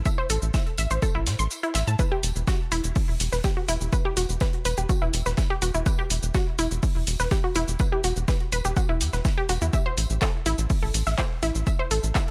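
Driving and hypnotic, this melodic techno passage, cut from a longer piece, runs in a straight 4/4 feel built around a punchy, layered electronic kick that sits up front and briefly drops out between 1.5 and 2.0 seconds. Beneath it, a tight sequencer bass blends sawtooth and square waves into a saturated filter pluck with a fast attack, its tube saturation and sidechain pumping giving the low end a mellow yet forceful push. Above, a lush, bright unison pluck plays arpeggios with detuned, warbling voices, a noise layer, vintage 12-bit sampler grit, tape echo and sidechain pumping. A techno drum kit adds handclaps, a shaker and metallic hats re-recorded in a small room, while a dry acoustic reggae kit with a high-tuned snare, hi-hat and tambourine sits filtered in the background. The harmony moves from Am to Esus2 and settles on A5 near the close, all wrapped in a small room ambience.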